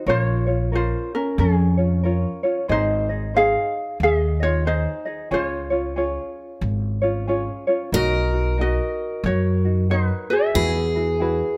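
Close, detailed microphones and a light touch of reverb put every instrument up front in this short, sunny Hawaiian passage cut from a longer piece. A mellow, fingerpicked ukulele carries the melody with an easy lilt, while a tenor ukulele, thumb-plucked, warm and light, fills in the accompaniment beneath it. An upright bass played pizzicato on gut strings gives a woody, thumpy foundation with a warm tone. At 7.9 seconds a bright, full-bodied dreadnought steel-string guitar enters with a picked second line. The relaxed, swinging groove moves through chords from Bbm and Ab to Db, then on to Cbmaj7 and Eadd9.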